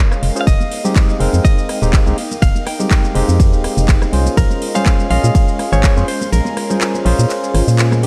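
Moody and deep, this short cut from a longer deep house piece in F minor at 123 BPM sets a punchy, up-front electronic kick and a tape-warm house kit of metallic hats, handclaps, ride cymbal, rim click and shaker over a hollow, organ-like FM bass with sidechain pumping, while barky tine electric piano stabs with tape echo and a bright, twangy, direct-recorded clean guitar melody play over Fm9 moving to Bbm9 at 4.4 seconds. High-tuned congas sit in the background, and a very quiet bed of silky string machine, ethereal airy pad and a distant, earthy chamber violin section fills out the dark, dry production throughout, with the kick dropping out at 6.3 seconds.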